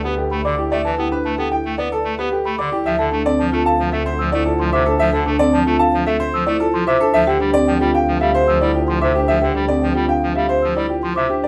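A straight, steady 4/4 pulse at 112 BPM drives this urgent yet meditative minimalist classical excerpt, where a clear baby grand piano with long sustain carries the melody over woody marimba arpeggios, a hollow clarinet-stop pipe organ with chiff, bell-like celesta arpeggios entering at 0.3 seconds, and a distant bowed double bass with expressive vibrato and portamento, all held in light reverb as the harmony moves from Em7/D to F6/D to G7sus4/D.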